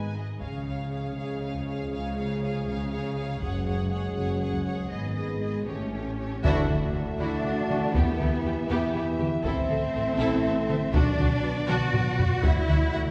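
A taiko ensemble struck with hard sticks drives this dark, dramatic 6/8 cut of epic orchestral film score, where a rich, expressive violin section carries the vibrato-laden melody over a smooth-topped second violin line, even violas, mellow French horns and trombones holding sustained chords in the background, and soft-attack cellos with woody double basses anchoring the low end, heard from further back in a reverberant scoring-stage space, with a huge, dark impact arriving at 6.4 s, a very quiet timpani stroke at 10.9 s and a drum fill at 11.7 s.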